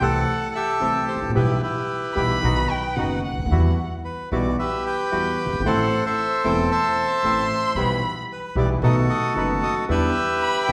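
Tango in E minor at 112 BPM with a sultry, melancholic rubato feel, where an up-front reedy bandoneon carries the melody over intimate concert grand piano accompaniment with audible action noise and deep bass, a second mid-forward bandoneon adds background stabs, a woody gut-string upright bass thumps pizzicato, and an expressive bowed violin with vibrato and portamento plays a second line from 2.1 to 3.9 seconds and again from 7.2 seconds, all set in a church-like recital hall reverb with vinyl crackle in this short excerpt.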